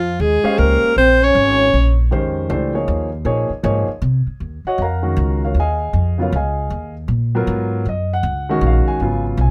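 Modal jazz in a swinging three, cut from a longer piece, with a cool, hypnotic mood. A clear alto saxophone carries the melody up front, its light vibrato and scooped notes set in plate reverb, while a dark, punchy trombone plays a smooth-topped, forceful second line beneath it; both horns drop out at 2.0 seconds. The pizzicato upright bass runs through the whole passage, woody and steel-strung, sitting up front. From 0.4 seconds a warm grand piano accompanies with an intimate, natural tone, long sustain and audible action noise. The harmony rests on a single chord before shifting at 4.4 seconds, leaving bass and piano to carry the second section in a lightly reverberant, closely miked sound.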